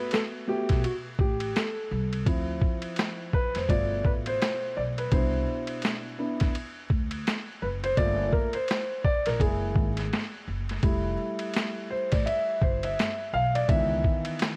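Swung sixteenths give this jazz-hop clip a 4/4 hip hop lean, carried by a gritty, compressed, pitched-down boom bap kit that enters at 0.1 seconds with a thumpy kick, high-tuned snare, hi-hat and ride sitting up front. A dark, mellow grand piano opens the cut at 0.0 seconds and plays a solo across its full length, sounding intimate and vintage, with audible action noise under its smooth voicings. An upright bass joins at 0.7 seconds, plucked pizzicato on steel strings with a woody, acoustic tone in the low register. The harmony drifts through jazzy colours such as Gmaj7, Cmaj7, F#9 and Fmaj9, which keeps the mood cool and smooth. Light reverb and small room ambience frame a worn, warbling cassette character, with vinyl crackle and a warbly pitch drift that make this fragment of a longer piece feel like an old tape.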